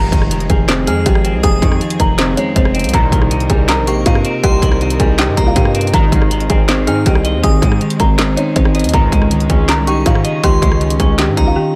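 Steeped in digital ambience, this dark, melancholic half-time trap excerpt sets a hollow, buzzing kalimba melody, softened by a low-pass filter and trailed by delay, over twangy clean electric guitar, soft sul tasto chamber strings, a heavy, saturated 808-style bass, recurring resonant filter-sweep synth stabs, a crystalline FM bell line that enters at 0.9 seconds, and an up-front drum kit with a hard-clipped kick, woody snare, bright hats, handclaps and rim clicks, all of it cutting to a break at 11.6 seconds.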